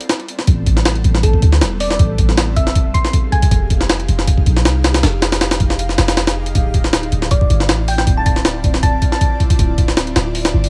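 Drum and bass in a jungle vein, this nostalgic, dark excerpt is driven by a gritty, pitched-up sampler-style kit sitting up front, with a thumpy kick, medium-tuned snare and hi-hat over a deep, boomy 808-style bass, all under a layer of vinyl crackle. The kick drops out at 5.8 s and returns at 6.6 s, while a round, tine-like thumb-piano-style synth pluck enters at 1.2 s and returns later, its gentle, detuned tone colored by chorus and dub echo. The harmony drifts through Am9, Fm9 and Dm9, lending the groove a mellow, wistful shade.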